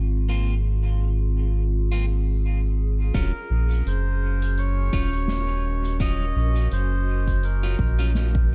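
A round, dark analog bass sits up front in this spacious, deep ambient dub excerpt at 84 BPM in swung 4/4 and Eb dorian, beneath a warbling, nostalgic tape-like pad with chorus whose filter sweeps through the opening 3.1 seconds on Ab6 and clean electric guitar stabs trailing dub echo, until a reedy, breathy melodica melody, a deep electronic kick in the background and a distant, roomy soft-mallet kit with echoing hi-hat and fat snare join at that point over Ebm7.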